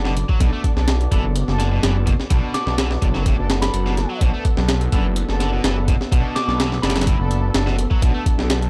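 A gritty, pitched-up sampler-style breakbeat kit with a thumpy kick, medium-tuned snare and tape-warm compression drives this funky, raw breaks excerpt alongside a swirling, saturated detuned saw bass drenched in phaser, both up front. A bright, distorted guitar riff with 12-bit grit and digital delay, veiled con sordino string stabs, and a lush, warbling pad pumping in the background fill out the dark, dry mix over a single Bm7 chord. From 2.5 to 7.5 seconds, a soft FM bell melody tinted with chorus, phaser and an AM radio sound floats high above.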